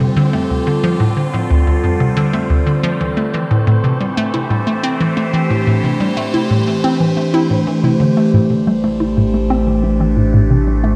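A straight 4/4 pulse at 90 BPM drives this expansive, mysterious stretch of sequencer-driven ambient space music, cut from a longer piece, where a hollow, bouncy, detuned square pluck riff with chorus and tape echo sits up front beside a bright, morphing wavetable pad holding Dm and Am7 chords through a phaser, while a breathy, wind-like tuned noise texture drifts darkly in the background, and at 8.3 seconds a deep, round sub bass on A1 enters as a filter sweep moves across the arpeggio, all set in a spring-reverb, echo-heavy mix with a cassette-tape tint.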